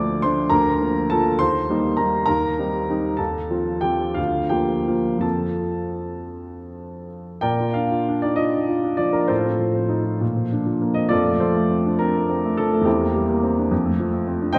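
Warm and passionate, this romantic classical character piece for solo baby grand piano moves in a rubato 6/8 at roughly 53-72 BPM in Bb major, its open, long-sustaining tone sitting up front across a range from C2 to D6 within a dark, warm production bathed in the wet reverb of a scoring stage, as the harmony drifts from a shadowed Dm opening toward a second passage from 7.4 seconds that settles on F in this fragment cut from a longer piece.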